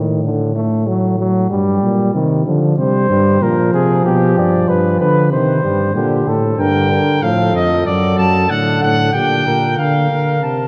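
A straight 3/4 pulse at 94 BPM carries this contemplative, solemn imitative brass canzona, tuned to A4 = 441 Hz and moving through chords such as Gm, Cm and D/F#. A trombone with light vibrato and a smooth top plays the accompaniment above a punchy bass trombone from the start. A warm flugelhorn enters with a second line at 2.8 s, and a bright, distant trumpet takes the melody at 6.6 s, all set in a long church reverb with a dark, warm production that lends the ensemble a reverent glow.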